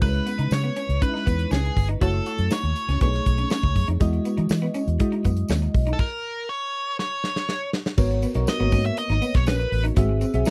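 A dry, close studio sound frames this bittersweet, slick 1980s jazz-funk pop excerpt at 121 BPM in G# minor, where a nasal, overdriven lead guitar with a parked wah carries the melody over a sparkling, bell-like FM electric piano with phaser, a round, foam-muted fingered bass, a punchy up-front drum kit with bright cymbals, a clean picked guitar riff, and a jingly tambourine in the background, with a stop from 6.0 to 8.0 seconds broken by a drum fill before the harmony settles on G#m11.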